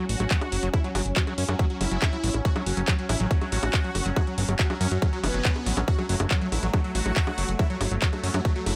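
An up-front electronic kick anchors this hypnotic psychedelic trance fragment alongside a fat, detuned analog bass with tube saturation, a huge compressed supersaw melody carrying phaser, cassette tape and delay, a squelchy distorted acid riff with dub echo and a bubbling stepped-filter chord texture, both of the latter sitting in the background, with bongos, handclaps and metallic hats from a drum and bass kit, all in a dry mix with sidechain pumping on the supersaw, texture and acid bass.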